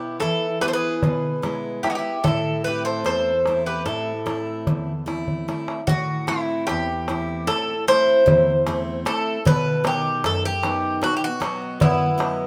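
A bright, metallic Greek bouzouki sits up front and carries the melody throughout, its picked double strings ringing with some octave doubling. This dark, melancholic Greek folk band piece is cut from a longer work and moves in a straight 9/8, gradually speeding up over its two passes through the same section. A second, warm-toned bouzouki plays a lower supporting line, dropping out at 5.0 seconds and returning near the close. Beneath them, a jumbo steel-string acoustic guitar with fresh strings gives full-bodied picked accompaniment over chords moving from E to Am and on to B. A clay-shell darbuka with a natural skin, struck with hard hands in a live room, drives the rhythm and plays a fill at 5.3 seconds. Light reverb places the band in a shared space.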